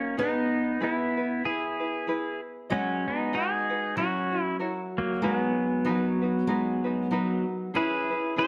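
A lazy swing in 4/4 at 95 BPM carries this languid, dreamy Hawaiian passage in B major, a short 8.5-second piece cut from a longer one. Up front, a clean, compressed electric pedal steel guitar sings the melody with fingerpicks, slide and volume swells, while a fingerpicked steel-string acoustic guitar traces a second line and a light tenor ukulele fingerpicks the accompaniment through Emaj7, F#7 and Bmaj7 before settling on E6. A moderate echo-chamber reverb wraps the dark, warm production in a soft haze.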